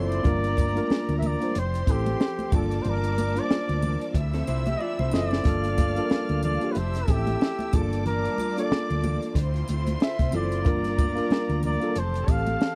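Swung sixteenths at 92 BPM in 4/4 drive this smooth, cinematic slice of lush 1970s-style soul in G dorian. A compact cocktail kit with a punchy kick and high-tuned snare sits up front beside a round, dark hollow-body bass, while a worn, slightly out-of-tune tine electric piano moves through Gm9, Fmaj9 and Dm9 chords. A distant vibrato flugelhorn carries the melody with tape echo over a smooth violin section line and very quiet, lush bowed strings. A lo-fi, slightly broken-up guitar riff surfaces at 4.3 seconds beside a drum fill at 4.8 seconds, and ringing congas and a shimmering triangle round out the dry, close studio sound.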